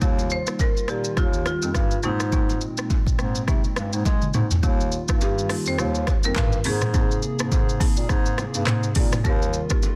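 Afrobeats at 104 BPM in Eb major with a sunny, joyful swing: an up-front electronic drum kit with deep kick, metallic hats, handclaps, rim clicks, shaker, toms, a softly clipped snare and a fill at 4.1 seconds plays alongside very quiet acoustic congas and bongos, while a distant, roomy bass clarinet holds the low end, a woody, dry folk marimba plays rustic accompaniment, a mid-forward marimba melody with digital delay enters at 0.3 seconds, and a dark, hollow, flute-like pad with chorus and sidechain pumping sustains Ebadd9 and Abadd9 chords in the background of a small room and a dense, heavily limited modern master.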